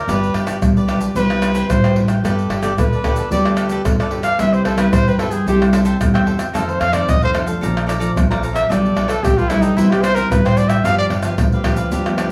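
A breathy, close-miked trumpet sings a playful jazz-style solo with scooped notes over a crisp, picked cavaquinho in this joyful samba and choro excerpt. A thumb-plucked classical nylon-string guitar with audible finger squeak and a woody, thumpy pizzicato upright bass fill out the harmony, while up-front tube shaker, tight surdo, pandeiro and tamborim, played with soft hands, drive the straight groove. The trumpet drops out at 11.1 seconds, leaving the band to carry the moving chords to the cut at 12.3 seconds, all wrapped in a wet small-room ambience.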